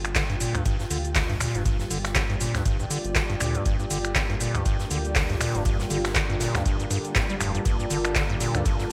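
A bright, 1980s-style digital sheen and a small room's light reverb frame this short, driving slice of acid house, cut from a longer piece and sitting on a single G minor chord with a trippy, swung pulse. A squelchy, hollow square-wave acid bass enters at 0.2 seconds with a resonant filter pluck, tube saturation and delay, while a round, dark analog bass anchors the low end with sidechain pumping. A deep electronic kick also arrives at 0.2 seconds, locking in with a booming, up-front analog drum machine that has played from the very start, its metallic hats, cabasa, finger snaps, handclaps and ride cymbal carrying gated reverb. Further back, a polished gated 80s kit adds bright cymbals, hi-hats and a fat snare in an airy stone room, its cymbals and hats pumping against the sidechain. Above it all, a thick, warbling unison pad holds sustained chords with chorus and pumping, and a blurred granular cloud pad drifts in its own built-in reverb, running through to 8.9 seconds.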